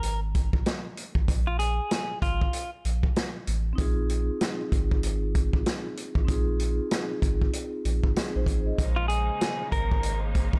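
A gritty, up-front vintage drum kit with a tight kick and rolled-off top drives this moody, reflective boom-bap hip-hop excerpt at 96 BPM with a swung feel, over a deep, round sub bass, while a clean, compressed electric guitar plays brief melodic phrases, a mellow, airy vibraphone with cassette-tape color adds accompaniment from 3.7 seconds, and a bright, lush but distant string section sustains chords from 8.8 seconds.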